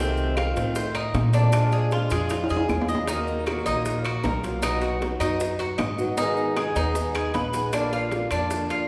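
A wet recital-hall reverb fills this short, danceable and sultry cut from a Cuban son and guajira piece in Eb minor at 155 BPM, with a bright, metallic Cuban tres playing arpeggios on its doubled strings up front beside a dark, woody pizzicato upright bass, while a boxy, fingerpicked swing-style acoustic guitar supplies accompaniment. Very quiet, tight high-tuned bongos and grainy maracas enter at 0.2 seconds, and ringing metal-shell timbales and faint claves join at 0.4 seconds, sitting in the background. A drum fill at 2.3 seconds leads into the second section at 3.1 seconds, where the harmony moves from Ebmadd9 through Abm.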